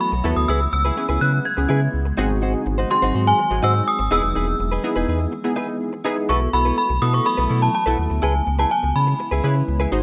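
Pop with a euphoric, carefree mood at 124 BPM in a straight 4/4, this excerpt sets a chiming, inharmonic synth chime melody with ensemble chorus up front over a deep sub bass with octave, a punchy, funky polysynth comp with chorus, a picked, clean direct-recorded electric guitar riff with subtle chorus, and a glassy, warbling FM pad sitting in the background with its own reverb, moving through C#m7, G#7 and Emaj7 before a break at 5.3 seconds leads into a B7sus4 section at 6.3 seconds, all in a small room with a rough home demo mix.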